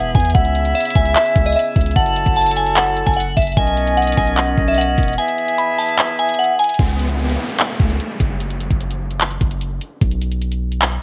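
The rhythm sits in a half-time trap groove at 149 BPM in 4/4, with a knocking kick, bright hi-hats and handclaps from an electronic drum kit that sits up front with a tape-worn tint, while a deep, mellow sine 808 bass holds long decaying notes beneath it. This eerie, brooding hip hop excerpt, cut from a longer piece, opens with a crystalline FM synth bell carrying the melody through chorus, phaser, a low-pass filter and cassette coloring, shadowed by an airy silver concert flute playing a second line with vibrato and tape echo. A close-miked woodwind section adds sustained classical-style chords with gentle vibrato, moving through C#m7, F#m7, Badd9 and E. The kick drops out between 5.2 and 6.8 seconds, and at 6.8 seconds the bell, flute and woodwinds stop as the track breaks down to drums and bass over an F#5 chord, with an electronic downlifter sounding until 10.0 seconds. Light reverb and the hiss-tinged character of a home cassette recording give the whole excerpt a murky, lo-fi haze.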